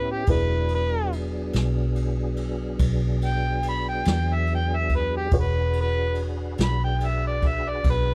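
Laid-back and rollicking, this slow blues in 12/8 is cut from a longer piece and centers on a gritty, overdriven harmonica solo played up front with scooped notes, tongue slaps and a soft attack. A round, punchy, foam-muted electric bass sits prominently underneath, while a woody, slightly detuned upright piano stays in the background and a tonewheel organ holds sustained chords through a slow rotary speaker with chorus vibrato, light overdrive and audible key click. Brushed jazz drums with dark cymbals, a medium-tuned snare and a boomy kick join at 0.3 s, and the recording has a dry, close 1970s-style studio sound.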